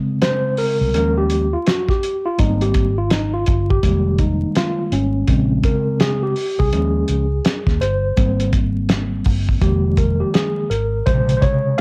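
A lo-fi home cassette recording with vinyl crackle and little reverb, this short cut from a longer jazz-hop piece sits in a warm yet cool mood at 83 BPM in 4/4, swung at 62% on the 16ths, in Ab major tuned to A4 = 436 Hz. A mellow tine electric piano opens the piece and carries a solo throughout, its clean tone heard up front as if through built-in speakers and coloured by cassette tape. A cloth-damped, thuddy acoustic drum kit enters at 0.2 seconds with a fat snare, a tight kick and hi-hat, sounding saturated and gritty with a rolled-off top in a small room, also placed up front and tape-coloured. At 0.8 seconds a vintage foam-muted fingered electric bass joins, dark, round and punchy through an amp, and it drops out at 11.4 seconds. The harmony cycles through lush extended chords, Bbm9, Eb9sus4, Abmaj9 and Fm11, before returning through Fm7 to Bbm9.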